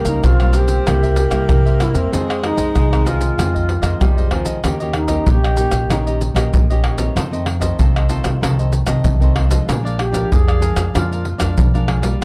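Lively and nostalgic, this excerpt of samba and choro moves at 95 BPM in a straight 4/4 in F minor. A mellow, airy alto flute with vibrato and tape echo carries the melody, joined by a breathy, whispered tenor saxophone second line with subtone and scooped notes until 4.6 s, when the flute takes a solo over chords moving from Eb7 through F7 to Bb7. Underneath, a crisp picked cavaquinho, a full-bodied fingerpicked nylon-string guitar and a woody pizzicato upright bass play alongside up-front maracas, pandeiro, tamborim and a deep surdo in a dark production with light reverb.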